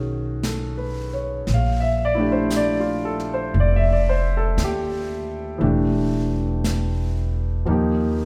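A clear grand piano and a woody, pizzicato upright bass open this intimate, wistful jazz ballad excerpt together, moving slowly at 58 BPM in a swung 4/4, with the bass placed up front beside the piano. The brush drum kit joins at 0.4 seconds, its brushed snare and hi-hat sitting lower in the mix. The harmony shifts through Badd9, Bbmaj7, A7sus4/E and Ebadd9 within a moderate recital hall reverb.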